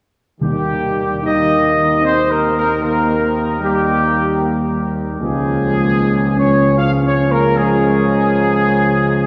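Solemn and regal, this classical brass passage in triple metre is cut from a longer piece and set in a cathedral with a long, wet reverb that places the listener further back in the room. A mellow trumpet section carries the melody up front, playing tight with light vibrato, a soft attack and a smooth top. Behind it, a French horn section holds sustained chords in the background with a gentle vibrato, while a warm, tight trombone section adds its own sustained harmony beneath. A solo tuba anchors the bass with a mellow tone. Very quiet timpani, struck with soft mallets for a round, close and dry sound, appear only from 0.4 to 1.6 seconds, and the harmony moves from Eb to Db at 5.2 seconds.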